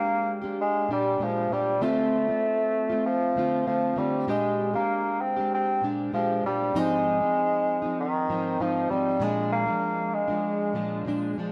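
Soaked in a wet plate reverb, this hazy, dreamy indie pop fragment pairs a warm, vintage bassoon, singing a classical-style solo melody with light vibrato through lush chorus and diffuse ambient delay until 11.1 s, with a full-bodied, fingerpicked jumbo steel-string acoustic guitar whose fresh strings carry analog chorus and a warbly pitch drift through to 11.5 s, both sitting up front over chords moving from Bb6 through Dm7 and Ab6 to Bb7.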